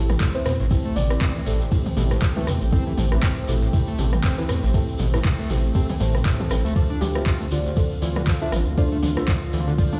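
A squelchy, gritty acid bass riff with a resonant filter pluck sits in the background of this trippy, driving acid house excerpt in A minor, running at 119 BPM in 4/4 with a swung sixteenth-note feel. Beneath it, a deep sine sub bass with tube saturation sits up front beside a thumpy, tape-warm electronic kick. An overdriven analog drum machine adds metallic hats, handclaps, ride cymbal, rim clicks and toms, while a grainy acoustic shekere sits low in the mix. A smooth, warbling vintage pad holds sustained chords with sidechain pumping, and dark wave-folded chord stabs carry chorus, phaser, delay and a cassette-tape colour. A round, keys-like FM lead with vibrato plays a brief phrase at 0.3 seconds and returns at 7.0 seconds, shortly after the harmony moves from Am7 to Dm7 at 6.8 seconds. The whole piece sounds as though it is played through a big sound system in a bare room with large studio reverb.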